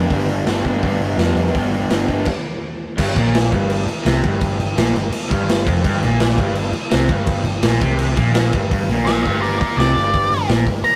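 Raw and swaggering, this garage rock fragment from a longer piece pairs a crunchy, double-tracked overdriven guitar riff with a round, dark hollow-body bass and a punchy, gritty drum kit in a pumping stone room, with a brief stop at 2.3 seconds before an octave-fuzz lead guitar bursts up front with a distorted solo at 9.0 seconds, the whole rough rehearsal-room sound tinged by tube saturation and light reverb.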